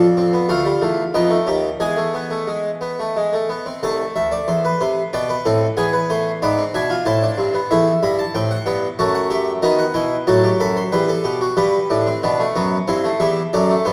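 A Flemish-style harpsichord, plucked and brilliant with the fullness of three sets of strings, sits up front and carries this stately, elegant four-part baroque-style fugue alone, in A minor at 92 BPM in a straight 3/4, tuned to A4 = 441 Hz. Its voices span a low C2 to B5, moving from a Dm/F opening through an E chord into A minor, then turning toward E minor by way of F#m7 and B7 before settling on G at 11.6 seconds and Am7/G at 12.9 seconds. A long, wet scoring-stage reverb surrounds the instrument in this short passage taken from a longer piece.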